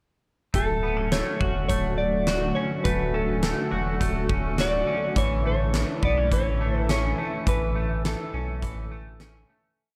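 A mellow electric guitar carries the melody in this blissful, floating dream pop piece, playing dark, clean arch-shaped motifs with an analog delay trailing each phrase. Beneath it, a clean electric guitar rolls through bright, twangy fingerpicked arpeggios coloured by analog chorus and delay, while an ensemble organ-string pad holds soft, vintage, organ-like chords shimmering with ensemble chorus. A round sine sub bass supplies a deep, sustained line with slides, and a huge arena drum kit lays down a simple, spacious backbeat with a punchy kick and fat snare. At 104 BPM in a straight 4/4 and D major, the short verse moves from Dmaj7 to A at 5.2 seconds before fading out from 7.5 seconds. The whole sits in a small room with a dry, gritty hardware character.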